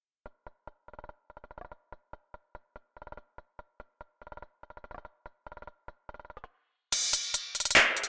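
A half-time groove in 4/4 drives this brooding, melancholic hip hop excerpt, carried entirely by an electronic trap drum kit that sits up front from 0.3 seconds. Crisp hi-hats, handclaps and crash cymbal give the produced kit its character, with a tape-warm tone under the sharp top end. The kit is bathed in a wet spring reverb and a digital ambience, and the echo-heavy mix is shaded by a low-pass filter, lending a murky, shadowy atmosphere. A filter sweep runs through the opening stretch before the drums drop out briefly at 6.5 seconds. When they return at 6.9 seconds for a new section, the kick stays muted, leaving the remaining percussion hanging in the reverb until the cut at 8.1 seconds.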